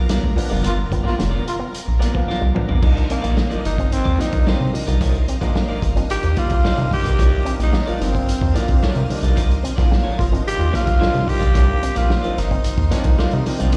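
Sustained string-machine violin chords shimmer in the background over a rubbery, bouncy square-wave bass up front, while a woody upright piano with audible action noise jabs out stabs on a G7#9 chord at the start of this sly, driving funk excerpt in C minor at 110 BPM. Almost at once a muffled vintage drum kit with a punchy kick and dark cymbals joins, along with a clean semi-hollow guitar playing accompaniment and a twangy envelope-filtered guitar riff, both sitting back in the mix. A distant, growling trombone adds a raspy second line between 0.7 and 1.6 seconds as the band hits accents, and a drum fill leads into the section change at 2.8 seconds, where the harmony settles on Cm11. From 3.1 seconds a breathy, subtone tenor saxophone takes a gritty jazz-style solo with vibrato and scooped notes, its smooth top riding over the groove, and the trombone briefly returns during a second round of band accents. 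Slapback echo colours the horns, piano and guitars, and the whole performance comes across like a live gig heard through the venue's PA in a recital hall.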